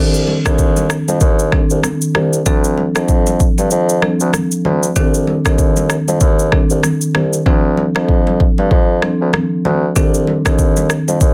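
A dense, heavily limited modern mix with light reverb frames this sultry, smooth afrobeats excerpt at 96 BPM in 4/4, its sixteenths swung at 58% and its harmony sitting in C dorian, moving between Cm69 and Dm7. A mellow bassoon carries the bass line up front from the first moment, played in a classical style with light vibrato and a vintage character. A close-miked, dry marimba with medium mallets fills in the accompaniment with a full tone, holding the middle register until about 10.7 seconds. The electronic, produced afro-pop drum kit sits forward with a deep, tape-warm kick, rim clicks and shaker, its snare edged with soft clipping, and the hi-hats drop out between 7.5 and 10.0 seconds. Behind it all, ringing, medium-tuned acoustic congas struck with hard hands add a band-limited, old-fashioned texture in the background.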